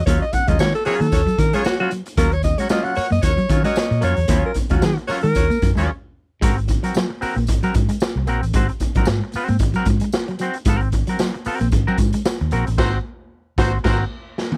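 A 16th-note funk groove at 113 BPM in 4/4 with a light swing sets a hypnotic, cool mood over an Ebm9 chord that shifts to Ab9 at 6.4 seconds, in a brief cut from a longer piece. A raw garage drum kit sits up front, its gritty, saturated sound marked by a boomy kick, dark cymbals and a pumping small-room character, while a tambourine jingles quietly in the background. A dark, foam-muted fingered bass gives a round, punchy low end as a clean semi-hollow guitar plays accompaniment and a slightly broken-up electric guitar repeats a riff through a phaser. The alto saxophone opens with an up-front jazz-style solo full of vibrato, backed by a tight horn section with light vibrato that drops out as a short break arrives at 5.9 seconds. The horns return for a band accent from 12.8 seconds, and a drum fill at 14.4 seconds closes the passage, all in a dry sound with little reverb.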